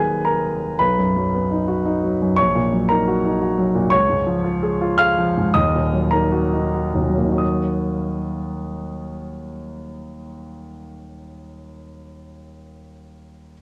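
Neoclassical minimalist piano in a melancholic, reflective 3/4 with a rubato feel, this short cut from a longer piece features a solo grand piano, warm and up front, that slows between 3.2 and 7.4 seconds, all set in light reverb and the worn, warbling pitch drift of old cassette tape.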